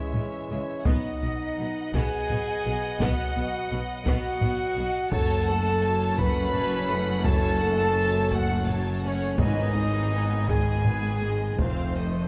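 This cinematic, epic orchestral film score is cut from a longer piece and moves at a slow 56 beats per minute in a straight 6/8, with a dramatic, epic mood. A lush, expressive symphonic violin section carries the melody with a soft attack and vibrato. A hollow, pure concert flute and a focused studio violin section add second lines in the background, while a very quiet, distant viola section supplies smooth accompaniment. Mellow French horns, present and classical in style, hold sustained chords over softer, roomy trombones, and a dark trumpet section punctuates with stabs. Clear cellos and rich double basses anchor the bass beneath heavy-stick taiko drums that sound compressed and saturated, and a very quiet timpani on hard mallets enters at 9.4 seconds. The harmony moves from C#m through B, F#m and G#m to F7 in a moderate concert hall, captured with close, detailed microphones.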